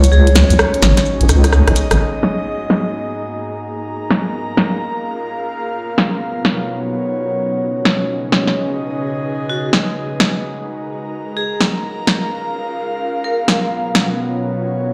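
A deep, warm wobble bass, a skippy garage drum kit with a cracking snare and a soft, breathy pad open this moody two-step UK garage cut at 128 BPM in G# dorian, with the bass dropping away at 2.0 s just after a drum fill and band accent. From there a filter sweep rides the swung, tape-flavoured drums while a faint, ethereal pad with ensemble chorus sustains lush ninth and seventh chords behind the up-front breathy layer. A bright, metallic vibraphone struck with hard mallets and carrying a fast motor vibrato and delay returns for a brief melody at 9.5 s, all set in a large, reverberant room.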